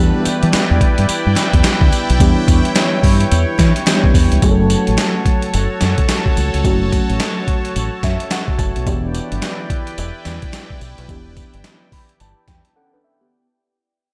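R&B in a new jack swing style, this confident, slick passage is cut from a longer piece and rides a swung sixteenth-note feel. A gritty, compressed sampler-style drum kit sits up front with a thumpy kick, medium-tuned snare, hi-hat and tambourine, joined from 0.5 seconds by a crisp, distant group handclap that is barely audible. A deep dub fingered electric bass adds a dark, punchy low end, while a soft, warbling vintage FM electric piano with chorus and tremolo plays the chords, adding short fills from 7.8 seconds. A bright, detuned sawtooth pad with chorus, a filter swell and a slow attack sustains evolving chords as the harmony moves from Em7 to F#m and back to Em7. The music fades out from 4.4 seconds and reaches a brief break at 12.8 seconds, all set in a lush digital hall reverb that gives a big arena sound.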